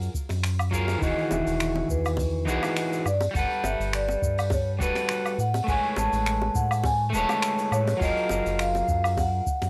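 A lightly swung 16th-note groove from a vintage brush kit with finger snaps, hi-hat, shaker and woodblock, a deep analog electronic kick and close, low-tuned bongos carries this smooth sunset chillout fragment, where a round, dark, tube-saturated bass and a twangy, slightly broken-up electric guitar move through lush major-ninth chords until a mellow vibraphone with soft mallets, gritty with vintage sampler texture and delay, enters with the melody at 1.0 seconds, all in a warm, lightly reverberant, rough demo-style mix.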